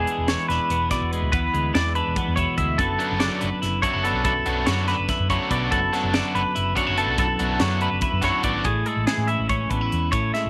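Driving along in 7/8 at a brisk 286 BPM counted in eighths with a straight feel, this excerpt of math rock and midwest emo in D lydian sounds wistful yet bright. Two clean, compressed twelve-string electric guitars sit up front: one, twangy, carries the accompaniment in the lower register, while the other spins high arpeggios between G#4 and E5. A dark, round hollow-body short-scale bass, fingered and amped, anchors the low end, and a crisp fusion drum kit with an airy, polished studio sound adds hi-hat, a punchy kick and a high-tuned snare. At 3.0 seconds a biting, double-tracked overdriven guitar joins with a riff that runs until 8.7 seconds, when the harmony shifts from E7 and D69/F# to a closing Amaj9. Moderate spring reverb and small-room ambience give the mix a sense of space.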